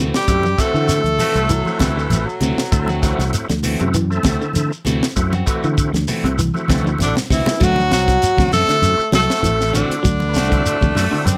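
Set in light reverb, this joyful, hypnotic afrobeat excerpt moves at 98 BPM in D mixolydian with a gentle sixteenth-note swing, opening on a D9 chord. A breathy, whispered tenor saxophone carries the melody up front beside a brilliant trombone second line, and a raspy, distant baritone saxophone enters at 1.2 s; the tenor and trombone fall silent for a stretch and return at 7.0 s. Underneath, a tight funk kit with a high-tuned snare, punchy fingered bass, grainy shekere, bright damped congas, an overdriven tonewheel organ with slow rotary speaker and key click, and two twangy, slightly broken-up background guitars (one playing lush chorus arpeggios, the other phaser-tinged stabs) keep the groove turning, with a drum fill at 6.7 s leading into the next section.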